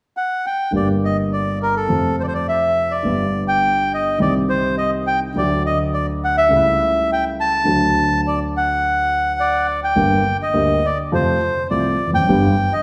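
The rhythm moves with a free, rubato give and take over a 4/4 pulse near 104 BPM, setting a tense, sultry tango mood in G harmonic minor. A reedy bandoneon carries the melody from 0.2 seconds, its smooth tone sitting up front in the upper register. A grand piano enters at 0.7 seconds with accompaniment that reaches down low, its mellow, intimate sound touched with audible action noise and a vintage character. The harmony circles through Gm, F, G and Cm before turning to D and A7/C#, then a new passage begins at 10.0 seconds and returns to Gm and F. A recital-hall reverb surrounds the pair, giving the performance a resonant, churchlike space. The passage is cut from a longer piece.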